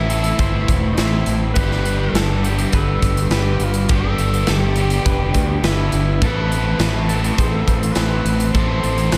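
A breathy alto saxophone carries a wistful, blissful melody from the start, its light vibrato and scooped notes sounding distant and roomy through delay, while a twangy, compressed clean guitar picks arpeggios with subtle chorus and delay in the background. Two overdriven guitars, one biting with subtle chorus and a hollow-body one touched by reverse reverb, play a riff beneath, and a growling, punchy fingered bass with overdrive sits up front alongside a big acoustic rock kit that enters at 0.1 seconds with a punchy kick. This straight 4/4 shoegaze and dream pop passage at 103 BPM in G major moves from Am to G and back to Am, all soaked in a lush hall reverb that gives it a dreamy glow.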